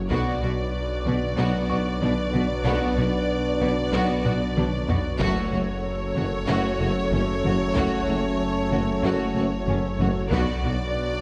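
A cinematic hybrid of orchestral and electronic film scoring, this short cut from a longer piece feels vast and relentless in a steady, straight 4/4 pulse. A lush, bowed violin section carries the melody with focused vibrato, while a second, more distant violin line, a background viola section and very quiet cello and double bass sections fill out a rich symphonic string body. Mellow French horns hold tight chords in the background, and a hollow, flute-like pad with chorus sustains airy harmony beneath them. The low end pairs a thick, beating, menacing detuned saw bass with a soft-attack tuba, and a very quiet taiko ensemble struck with hard sticks plays throughout, adding a fill between 4.3 and 5.2 seconds. A felt-muted upright piano adds intimate texture with audible action noise, all set in a moderate concert hall reverb over chords moving from Bm to F#m and back to Bm.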